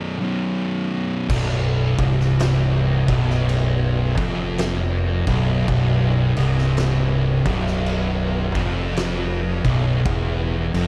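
Stoner and doom metal with a hypnotic, sludgy feel, this excerpt opens with two thick fuzz guitars playing the riff alone, one up front and one dark in the background, before a growling, overdriven fingered bass and an oversized low-tuned drum kit with a fat snare, punchy kick and dark cymbals in a distant, roomy stone space join at 1.3 seconds under a light reverb.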